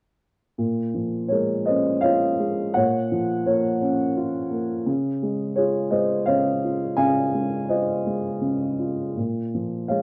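A mellow, woody upright piano plays alone and up front from 0.6 s to 10.0 s in this lyrical classical excerpt, its boxy tone and long sustain carrying a sunny, warm mood at 84 BPM in a flexible, rubato 3/4, tuned to A4 = 436 Hz. The harmony moves from Bbm7 through Gbmaj7/Bb and a lingering Dbmaj9 before returning to Bbm7 at 9.2 s. The sound is dark in production, set in a small room with moderate reverb.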